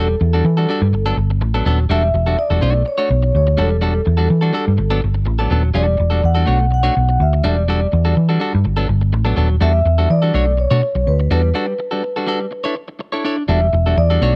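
Disco at 124 BPM in a straight 4/4, this short excerpt cut from a longer piece feels sultry and driving. A fingered hollow-body short-scale electric bass sits up front and carries the low end, its tone dark, round and punchy. A clean, picked electric guitar plays the accompaniment with a warm, compressed sound. On top, a vibraphone struck with soft mallets carries the melody, metallic and ringing yet mellow and airy, with a medium motor vibrato. The harmony circles through Em11, Gmaj9 and Bm9 before a break from 11.6 to 13.5 seconds shifts to Aadd11/D and settles back on Em11. The recording is dry and close in a 1970s studio style, with a small room reverb.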